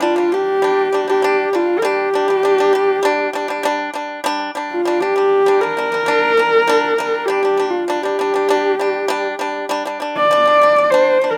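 Recorded outdoors with barely any reverb and an open-air sound, this short Mongolian folk passage feels solemn and windswept. A husky, woody horsehead fiddle, bowed by a single player up front, carries the melody with vibrato and portamento. A bright, percussive pipa, plucked with fingerpicks and touched by a slapback echo, plays arpeggios beneath it until the clip ends at 11.4 seconds, with a new section beginning at 4.3 seconds.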